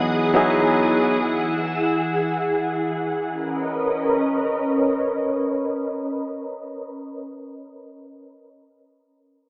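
A clear, intimate concert grand piano, its action noise audible through a low-pass filter and analog delay, opens this relaxed, soulful amapiano fragment alongside a silky, warbling string machine with ensemble chorus, and after the piano stops at 1.2 s the vintage strings hold sustained chords alone, moving from Emaj9 to Bmaj9 at 3.3 s in an echo-heavy, lightly reverberant mix with a small-speaker sound.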